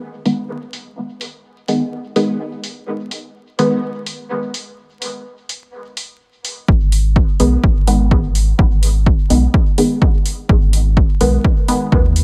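With a 53% swing on the sixteenths in 4/4 at 126 BPM, this hazy, cavernous dub techno cut in G# minor opens at 0.3 s with overdriven, low-pass-filtered electronic hi-hats under muted, detuned chord stabs colored by chorus, phaser, dub echo and sidechain pumping, until a punchy, up-front overdriven kick and a round, dark analog bass with its own sidechain pumping arrive at 6.7 s, over a bed of light reverb and vinyl crackle.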